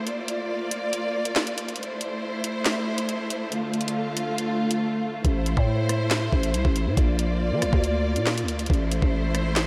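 A half-time drill groove at 139 BPM in 4/4 drives this menacing, dark hip hop piece in A phrygian, cut from a longer work. The drill drum kit starts at 0.1 seconds with a knocking kick, sharp snare, rim clicks, handclaps and tape-warm hi-hats, sitting up front with an electronic, produced edge. A symphonic string section holds sustained, bowed chords from the very start, lush and expressive with vibrato and a soft attack, moving through Bb, Am and Dm. That opening break gives way at 5.2 seconds when a growling 808-style bass enters, buzzy and sine-based with a fast attack and decaying notes, the loudest part in the mix. A huge ambient reverb bathes the whole in a dreamy haze, lending the close, up-front parts a shadowy depth.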